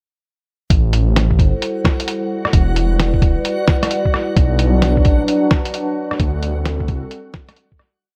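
A shuffled, swinging future garage groove starts at 0.7 seconds, with a muffled, thumpy two-step kick and a pitched-down, lo-fi sampler-style kit of hi-hat, rim click and fat snare skittering over a deep, rumbling detuned saw bass with tube saturation carrying a dub-style line. A warbling, nostalgic tape-like pad holds dark chords with chorus and sidechain pumping, while a reversed, dreamy texture swells in on a bright high note, lending the piece a wistful, rainy mood. The whole thing sits in light reverb and fades out from 5.6 seconds to its close at 8.0.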